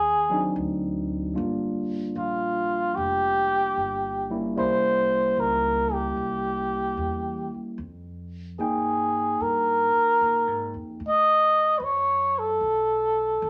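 A warm flugelhorn carries the melody up front with vibrato and scooped notes in this tender, intimate jazz ballad excerpt at 75 BPM with a swung feel, as a barky, clean tine electric piano through a combo amp accompanies from 0.3 to 11.0 s and a woody pizzicato upright bass holds the low end, inside a wet studio reverb over chords moving from Ab7#11 through Gm7, C7b9 and Fm11 to Asus2.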